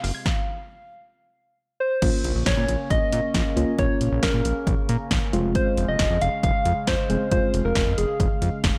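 Bathed in digital ambience, this cool, melancholic synth-pop excerpt in Bb minor at 136 BPM sets a punchy analog drum machine, whose kick and snare carry the sound of a large room, and a fat, detuned sawtooth bass under a smooth, warbling vintage pad, while a bright, round struck synth lead carries the melody up front with chorus and slapback echo, and a mellow, dark FM electric piano enters at 2.0 s and plays a fill at 4.7 s as the chords move from Fm to Bbm and back to Fm.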